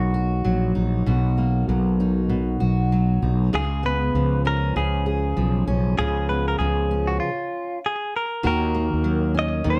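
A twangy, clean electric guitar recorded direct carries the melody in this sunny, carefree pop excerpt, its compressed, picked tone given a slapback echo. Beneath it, a fingerpicked steel-string acoustic guitar supplies warm accompaniment, while a growly fretless electric bass sits up front in the low register. The tune moves at 98 BPM in 4/4 with a gentle sixteenth-note swing, with chords passing from Bmaj7 to C#7. A stop arrives at 7.2 seconds, and at 8.4 seconds a new section begins on D#m7. Light reverb gives the trio a touch of space.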